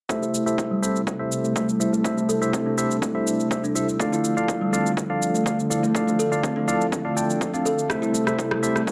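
Afro house with a warm, spiritual mood, cut from a longer piece, moving from Am7 to Dm and back. A woody, ringing kalimba plays arpeggios and a worn, slightly out-of-tune tine electric piano sits up front with stabs; both pump with sidechain, carry dub echo and run through a filter sweep, over a smooth, detuned sawtooth analog pad holding chorused, tremolo-laden chords that also pump. A punchy, overdriven electronic kick re-recorded in a large room and a tape-toned electronic shaker and rim click drive the groove, all within a light digital ambience.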